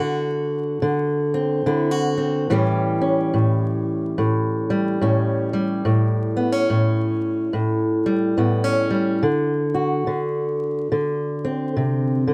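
Loosely swung eighths in 4/4 give this short blues cut a rollicking yet laid-back gait, with a lone fingerpicked, ladder-braced acoustic guitar up front, moving from D7 to A7 at 2.5 seconds and back to D7 at 9.2 seconds. Its old strings sound dark, woody and boxy, caught by close, detailed microphones with light reverb and a veil of vinyl crackle.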